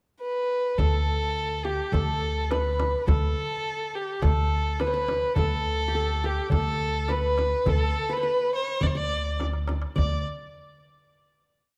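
A straight 4/4 pulse at 105 BPM drives this stately, festive Arabic maqam ensemble piece in D maqam rast, heard in a moderate recital hall reverb. After a solo violin pickup at 0.2 s, the up-front violin, dark and expressive with vibrato and portamento, carries an ornamented modal melody through tape echo. From 0.8 s, the bright-edged, plectrum-plucked qanun plays the same line with its own ornaments, a woody, thumpy pizzicato upright bass sits on D2 with the low drum strokes, and a crisp metal-shell darbuka in the background pairs with a deep, large frame drum in low and high stroke patterns, with a drum fill at 9.4 s leading into the final note.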